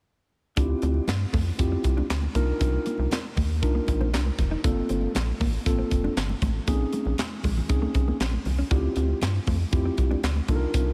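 A rubbery, hollow square-wave bass underpins this slick, danceable early-eighties boogie funk excerpt, its resonant filter pluck and fast attack giving dark, bouncy low notes from F1 to G2. A tight funk drum kit sits up front in a small room, with a high-tuned snare, a tight kick, hi-hat and handclaps driving a straight 4/4 groove at 118 BPM in D phrygian. A mellow tine electric piano supplies clean chordal accompaniment through its built-in speakers, moving through Dm11, Cm11, Gm11 and Bbm11 before returning to Dm11. In the background, a fingered, compressed electric guitar repeats a riff coloured by analog chorus, while very quiet, ringing congas played with soft hands add close, dry percussion. Every part plays together from 0.6 to 10.9 seconds under light reverb, in a short passage cut from a longer piece.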